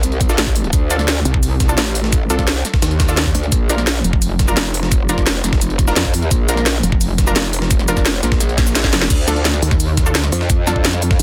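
Dark technical drum and bass at 172 BPM in D phrygian, tense and mechanical, driven by a growling, saturated bass with sidechain pumping and a metallic FM wobble bass that cuts in at 1.3 seconds, under a knocking electronic kick, an up-front kit with cracking snare, crisp hats, cabasa and crash, a very quiet gritty pitched-up jungle sampler kit, and a bright, detuned orchestra-hit-like stab with 12-bit grit and digital delay sitting in the background, all moving from Dm to Bb and back to Dm after a drum fill at 8.6 seconds in a dense, heavily limited, dry mix.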